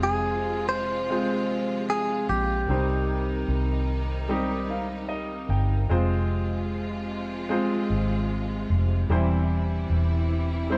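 A heartbroken, longing pop ballad in F minor at 75 BPM, cut from a longer piece, with a bright, twangy clean electric guitar carrying the melody up front until 3.9 seconds over a polished baby grand piano and a lush, bowed string section holding sustained chords with vibrato. A dark, round, foam-muted electric bass sits prominently beneath, and the piano adds a fill between 4.3 and 5.9 seconds as the harmony moves from Fm to Cm and back, settling on C/E. The band plays together in one room with moderate studio reverb.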